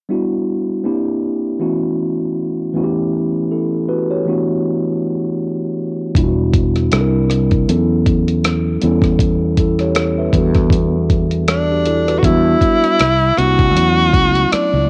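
A mellow tine electric piano opens this sultry, soulful neo-soul R&B piece alone, its clean tone coming up front through built-in speakers as it moves through Em7, C9 and suspended chords in E dorian. At 6.2 seconds a fretless electric bass and a dusty, sampler-style drum kit enter together at a relaxed 79 BPM in 4/4, with a gentle swing on the sixteenths. The kit sits up front, compressed and gritty, with a thumpy kick under hi-hat and rim click, while the bass adds a warm low end heard both direct and through an amp. At 11.5 seconds a bright tenor saxophone takes the melody as a pop-style solo in a narrow middle range, its vibrato-laden line present and carrying a cassette tape coloring. The whole recording is dry and intimate, like a home cassette recording, and this short excerpt is cut from a longer piece.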